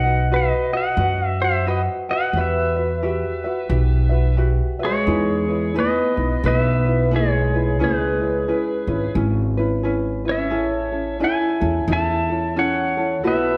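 A clean electric pedal steel guitar sits up front and carries the melody, its compressed, fingerpicked slide lines blooming in volume swells over this sunny, dreamy Hawaiian piece in a swung 4/4. Beneath it, a light tenor ukulele, plucked with the thumb, gives warm accompaniment, while a dark, woody upright bass on gut strings plays pizzicato, thumpy and also up front. At 4.8 seconds a fingerpicked parlour-sized steel-string acoustic guitar joins with a boxy second line, its fresh strings and warm tone filling out the middle. The harmony turns from a minor opening to a brighter major passage at 5.1 seconds, with lush seventh chords drifting by until the cut at 13.6 seconds. The band plays live in one room, bathed in a wet, spacious studio reverb that deepens the sunny, dreamy mood of this excerpt from a longer performance.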